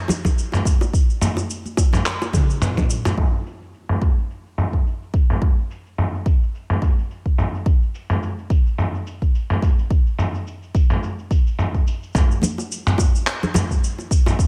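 This meditative, mystical downtempo piece, cut from a longer work, opens with a gritty, sampler-style soul drum kit with handclaps, shaker and toms, alongside bright acoustic bongos and congas struck with hard hands in a small room. A deep electronic kick drum enters at 0.2 s and sits up front, giving the groove a produced weight beneath the swung sixteenth-note feel. The compressed, tape-warm kit keeps a natural pitch and sounds re-recorded in a large room, with low-pass filtering dulling its percussion, toms, snare and room sound. A drum fill closes the opening passage, and the hand percussion falls away at 3.2 s, leaving the kit and kick to carry the long middle stretch. The bongos and congas return at 12.4 s for the closing passage, all framed by a digital ambience.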